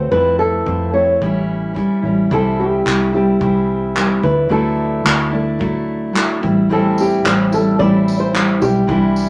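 A moderate studio reverb surrounds this heartfelt, carefree acoustic pop excerpt at 110 BPM, where a boxy, thumb-plucked flamenco guitar with fresh strings carries the melody over a full-bodied, up-front, fingerpicked jumbo steel-string guitar, a dark, round, foam-muted vintage electric bass, and a small-room unplugged drum kit of handclaps, punchy kick and tambourine played with bundle sticks that enters at 0.1 seconds, as the chords move from Fmaj7 and A7 into C, Dadd9 and Am7.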